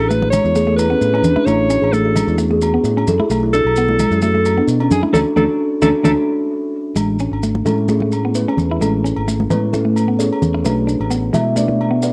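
Highlife guitar band music at 131 BPM in A major, joyful and danceable, with a lightly swung sixteenth feel and a bright, punchy alto saxophone up front, its scooped, vibrato-laden melody carrying a smooth top until it drops out at 6.1 seconds during a band accent. A clean, compressed electric guitar with spring reverb and a round, up-front fingered bass carry the Amaj7, Bm7 and Dmaj7 changes, while a woody, hollow-toned kalimba with tape echo plays airy arpeggios and takes a solo from 7.0 seconds. Ringing agogo bells, grainy maracas and thin-skinned, damped congas, the congas set in the background, fill out a cassette-taped home recording, cut from a longer piece.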